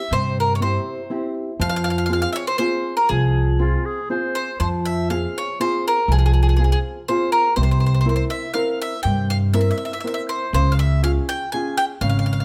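A straight 3/4 serenade at 121 BPM carries this short, romantic excerpt of Italian folk music in F harmonic minor, moving through C, Fm, C7 and Db. A bright, picked bowl-back mandolin sings the passionate melody on double strings, over a dark, boxy fingerpicked nylon-string guitar and a woody pizzicato upright bass. A classical-style clarinet adds a brief second line from 3.6 to 4.6 seconds, all captured up close and detailed with light reverb.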